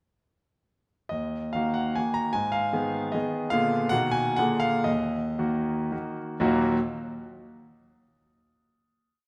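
A polished, up-front concert grand rings out in a moderate hall reverb in this short, complete classical piece, a romantic triple-time dance with dotted rhythms and free rubato, nostalgic and wistful in mood. The solo piano enters at 1.1 s with a brilliant single-line melody over deep bass and chords that stress the second or third beat, passing through Abm, Bb7b9, Bmaj7 and Bb7. It slows from 3.0 s and settles on a final chord at 6.4 s.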